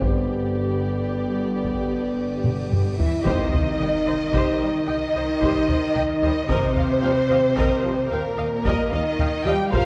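This cinematic, epic orchestral film score excerpt is heroic and dramatic, moving at a slow 74 BPM in a rolling 12/8 feel in C minor. A dark, expressive violin section carries the melody with vibrato and portamento, sitting in the background. A soft-attacked second violin line and a rich, even viola section fill in beneath it. Prominent French horns and very quiet, clear trombones hold sustained chords, while distant cellos and woody double basses anchor the bass. A compressed, saturated taiko ensemble played with heavy sticks drives the cue. A drum fill from 2.4 seconds runs alongside a huge, bright cymbal swell and sub drop that begins at 2.5 seconds, and both land on an impact at 3.3 seconds with a brief, very quiet hit of hard-mallet timpani as the harmony moves from G to C minor and then to E-flat add nine. The whole recording sits in a moderate concert hall reverb and carries the worn, warbling pitch drift of old cassette tape.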